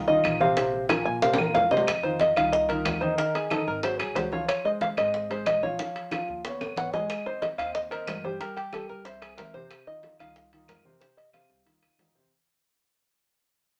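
Sultry and sophisticated, this Afro-Cuban jazz excerpt opens with a fingerpicked, twangy open-back banjo solo carrying the melody up front over a dark, short-sustain baby grand piano, pizzicato upright bass with steel strings, low-tuned congas, tight high-tuned bongos, distant woody claves and ringing metal-shell timbales, with drum fills dropping in at several points as the whole band fades out from 1.9 seconds onward.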